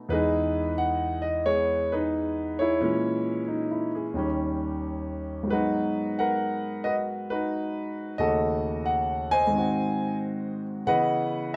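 A clear concert grand piano carries this solo jazz piece alone from 0.0 to 11.6 seconds, sitting up front with a natural tone and a deep bass register. The mood is cool and smoky, and the eighth notes swing in 4/4. Over about eleven seconds the harmony moves through rich jazz chords, from Emaj7 through A#m7b5, D#7 and G#m9 to D#m7b5 and G#7, before touching C#m9 at 10.9 seconds. A wet studio reverb surrounds the piano with the feel of a live performance in one room. The passage is a short cut from a longer piece.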